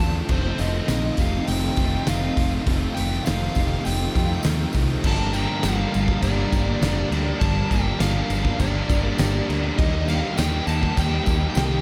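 Melancholic and brooding, this shoegaze and dream pop excerpt drifts in a straight 4/4, soaked in a huge ambient reverb as the chords move from F9 to Gm7 at 5.0 seconds and settle on Eb at 9.8 seconds. A dark, compressed fuzz lead guitar carries the melody through distortion and analog delay, over a bed of guitars: twangy, slightly broken-up arpeggios from a small old amp, a bright double-tracked distorted riff kept very quiet, and two overdriven riffs set in the background, one with lush chorus and a hollow-bodied semi-hollow part with reverse reverb. Up front, a fingered electric bass sits alongside a loose indie drum kit with a fat snare, punchy kick and dark cymbals in a pumping room, while a jingly tambourine sits distant in a large room.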